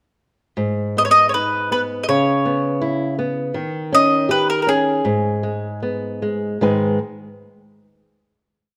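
Close, detailed microphones catch every string in a moderate recital hall, whose 1.6-second reverb gives this short, complete piece a soft halo. It is a mournful, longing fado-style ballad in G# harmonic minor, moving in 2/4 at a loose, rubato 75-82 BPM. A dark, small-sounding nylon-string guitar opens at 0.6 seconds, fingerpicking bass notes and rock-tinged chord figures through G#m, C#m7, D#7 and back to G#m. At 1.0 seconds a picked mandolin joins up front, its round double strings carrying a motif-based melody of short call phrases in a narrow upper range. The mandolin falls silent at 5.8 seconds, and the guitar alone lets a final chord ring out into the hall.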